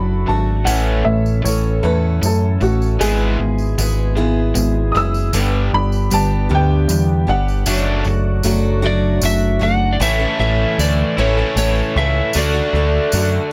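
Dry and close, with little reverb, this warm, hopeful folk and heartland rock excerpt in a straight 6/8 opens on a woody, short-sustained upright piano that plays a second line until 7.7 seconds, over picked acoustic guitar, a double-tracked overdriven hollow-body electric riff, and a round, dark bass sitting up front. A reedy organ with key click and slow rotary speaker holds very quiet sustained chords beneath, while a jingly tambourine sounds close and dry. At 8.9 seconds a compressed, slightly broken-up slide guitar played with fingerpicks takes the melody as the chords move from A toward D.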